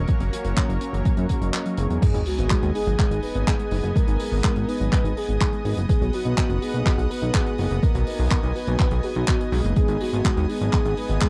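A lush, warbling pad of detuned unison sawtooths opens this bittersweet italo disco excerpt at 124 BPM in G# minor, joined at once by a soft, round pluck playing chorused arpeggios with tape echo and a glossy, up-front synth bass whose pulse-width and filter movement keep its tone evolving. An analog electronic kick with a punchy attack leads the rhythm in straight 4/4, supported by a damped 70s kit of handclaps, hi-hat and crash whose dark, rolled-off cymbals sit behind it. Mellow synth brass stabs arrive at 0.3 seconds, dark and detuned in the background. After a brief break with a band accent, the music lands on G# minor at 2.0 seconds, where a very quiet electronic sub drop sounds and a full, octave-layered synth lead takes the melody, shaded with chorus, tremolo, vibrato, tape echo and a touch of 12-bit sampler grit. The harmony moves from F# through G# minor and B before returning to G# minor, all captured in a dry, close, 1970s-style studio sound that keeps the dance feel intimate.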